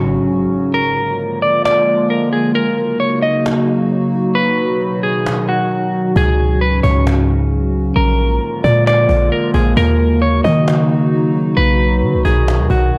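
Atmospheric cloud-rap hip hop excerpt at 133 BPM in a half-time 4/4 feel and Eb minor, ethereal and spacious. A warbly, nostalgic lo-fi pad with chorus, phaser and built-in reverb holds sustained chords moving through Dbsus4, Bb7, Ebm7 and B, while a very quiet electronic impact sounds in the first 0.7 seconds. At 0.7 seconds a dark, clean electric guitar melody enters, bathed in spring reverb, a low-pass filter and analog delay, over a woody, distant cajon with faint snares and soft hands in a large room. A deep, boomy 808-style bass arrives up front at 6.2 seconds to fill out the low end.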